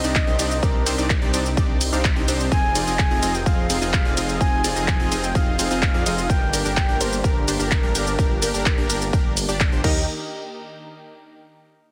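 Euphoric and triumphant, this festival progressive house drop at 127 BPM opens with a layered big-room kit of handclaps, hi-hat, shaker, ride and crash cymbals and a thick, dark detuned saw bass, joined at 0.2 seconds by a punchy, up-front electronic kick that the bass pumps against. A punchy, airy supersaw stab riff with delay cuts through a lush, warbling vintage pad sitting in the background, while a breathy, flute-like synth lead with gentle vibrato carries the melody over chords moving from Cmadd9 through Fm7 and Gm to Eb. The sound is heavily compressed and radio-ready, with light reverb and digital ambience, and the parts fall away by 10.1 seconds in this cut from a longer piece.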